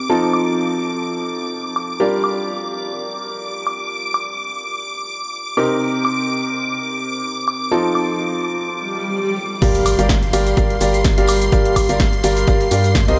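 A swung 4/4 groove at 126 BPM drives this soulful, bittersweet piano house excerpt in G minor. A clear, boxy grand piano riff with short sustain and analog delay sits up front over shimmering, sawtooth string-machine violin chords with ensemble chorus, both pumping with sidechain, while a punchy analog drum machine of low-passed crash, hi-hat, shaker, snare and woodblock plays in the background from 0.3 seconds. A very quiet electronic swell and impact sounds from 8.8 seconds into the drop at 9.6 seconds, where a hollow, dark, organ-like FM bass, a tape-warm electronic kick, a gritty, pitched-up breakbeat kit with a high-tuned snare, and a faint small-room tambourine join as the chords cycle through F7, Gm7 and Cm7, all soaked in a huge, dreamy reverb.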